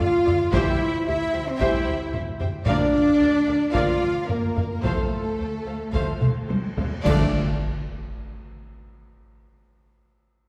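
A dark, dramatic orchestral film-score passage in D minor at 111 BPM opens with taiko drums struck with hard sticks, a prominent mellow French horn section holding sustained chords, and lush, vibrato-rich violins carrying the melody over violas, a smooth cello section and a bowed double bass pedal on D2, while a hollow, airy flute ensemble and a distant second violin line sit quietly behind. Very quiet clear trombones and a dark solo trumpet with stabs join at 0.5 seconds, dark cymbals and concert bass drum add weight from 2.7 seconds, and the chords move from Dm through C/D, Bb/D and F/D. A drum fill leads into a full band accent with a timpani hit on D at 7.0 seconds, followed by a huge, barely audible impact, all set back in a reverberant scoring-stage space.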